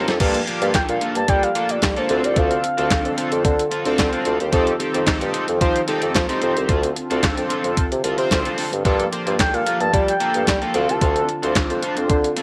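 Slick and danceable, this early-eighties boogie funk excerpt moves at 111 BPM in G minor, cut from a longer piece and opening on a drum fill. A clean 12-bit drum machine sits up front with a thumpy kick, medium-tuned snare, handclaps, hi-hat and crash, its sampler-style sound re-recorded in a small room. The bass line falls to a mellow bassoon with light vibrato and a classical manner, an unusual choice that carries the low end beneath a glossy, chorused polysynth built from pulse, square and sawtooth waves with a filter sweep. Further back, a twangy, slightly broken-up picked electric guitar plays a riff with subtle chorus, while a bold, brassy analog pad holds detuned sustained chords through chorus and phaser. A smooth, dark synth lead with vibrato, chorus and slapback echo sings the melody from 0.7 to 3.5 seconds and again from 9.4 seconds, over chords moving through Gm9, Dm7 and F7 in light reverb.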